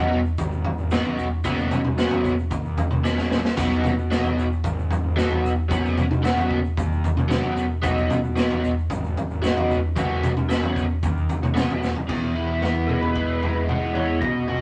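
Psychedelic rock with a trippy, kaleidoscopic mood, heard as a short cut from a longer piece in a straight 4/4. A bright, double-tracked overdriven electric guitar carries the riff up front through a rotary speaker, cycling between B and F#sus4 before the harmony moves to E at 12.1 seconds. Beneath it, a very quiet fuzz-picked electric bass adds a warm, overdriven floor, while a raw garage drum kit sits forward with a punchy kick, medium-tuned snare, crash and splash cymbals and toms, its gritty, saturated sound blooming in a small pumping room. A grainy egg shaker ticks along in the background, and drum fills land around 3.0 seconds and again near 11.8 seconds. In the closing moments a dark lead guitar through a small cranked amp enters at 12.9 seconds with a brief wah-inflected melody, all under a moderate studio reverb and a rolled-off, band-limited top end.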